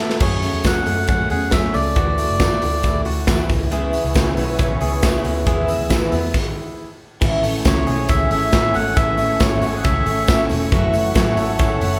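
A big rock drum kit sits up front with a punchy kick, a medium-tuned snare and bright cymbals, opening this jangly, youthful indie pop passage in A major at 137 BPM with a drum fill. A shimmering, octave-doubled twelve-string acoustic guitar picks the accompaniment alongside a twangy, compressed clean electric guitar playing arpeggios, while a dark, round, foam-muted vintage bass and a very quiet, jingly tambourine fill out the groove. A reedy, breathy melodica carries the dry, close-miked melody before dropping out, and a warm, detuned sawtooth pad with chorus slips into the background with sustained chords at 3.7 s. The progression moves through F#madd9, Dadd9, C#m7 and E until the band stops at 6.3 s, then lands on Amaj7 at 7.2 s, with the melodica returning at 7.7 s. The whole band sounds as if it is playing live together in one large studio room with moderate reverb.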